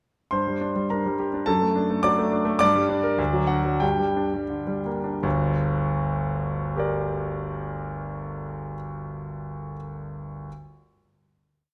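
Set in a moderate recital-hall reverb, this brief, complete classical virtuoso piano study in G minor sounds passionate and stormy: an up-front, intimate concert grand with deep bass, long sustain and audible action noise plays the tune in octaves over sweeping arpeggios in a rubato 2/4 at 78-107 BPM, slowing from 2.0 to 5.2 seconds before a final chord rings out from 5.2 seconds.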